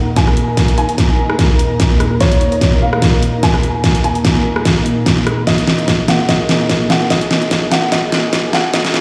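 A half-time groove with a swung sixteenth-note feel drives this heavy wobble dubstep excerpt, which plays as one long build-up with a drum fill and a filter sweep running throughout. The drums enter at 0.2 seconds: a punchy, tape-warm electronic kick and an up-front kit of hi-hat, rim click and a deep snare that sounds re-recorded in a large room. Beneath them, a lush, thick sawtooth unison pad holds detuned chords with a slow attack and chorus, and it pumps against the sidechain alongside a fainter ethereal pad. That airy triangle-and-saw texture sits in the background, soaked in its own reverb and ensemble chorus. Over the top, a dark, mellow, boxy grand piano carries the melody with audible action noise, short sustain and a touch of delay. A very quiet electronic riser creeps in at 7.7 seconds, while the whole mix, bathed in a hall reverb, sounds played through a big sound system in a bare stone room, giving the piece an aggressive, chaotic edge.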